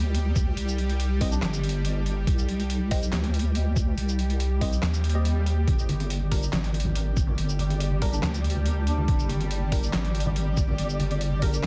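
Deep dubstep excerpt at 141 BPM in a dark, heavy half-time, where a deep, wobbling chorused bass sits up front with a gritty, pitched-down kick and a tape-toned sampler-style kit of snare, handclaps, hi-hat and shaker, beneath a tense string-like drone with phaser and vibrato, a muted phased dub chord stab with echo, a distant duduk phrase with scooped notes at 1.3 and 8.1 seconds, a background swell at 5.0 seconds, faint distant congas and bongos entering at 5.9 seconds and a flickering grainy texture, all moving from C minor to G5 inside a dense, heavily limited master dusted with vinyl crackle.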